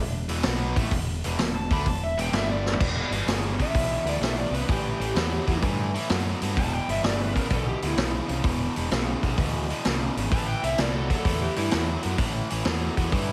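A big arena sound bathed in concert hall reverb frames this smoky, heavy blues rock power trio piece with a southern rock edge, cut from a longer track and swinging at 128 BPM in 4/4 in E minor. A bright, double-tracked cranked stack guitar drives the riff up front with overdrive and slapback echo, over a growling, overdriven picked electric bass and a vintage drum kit with a punchy kick and dark cymbals. An overdriven slide guitar played with fingerpicks enters at 1.6 seconds to carry the melody with its own slapback echo, and a drum fill at 2.6 seconds leads into the main section, where the chords move from Em through A5 and E5 to Am.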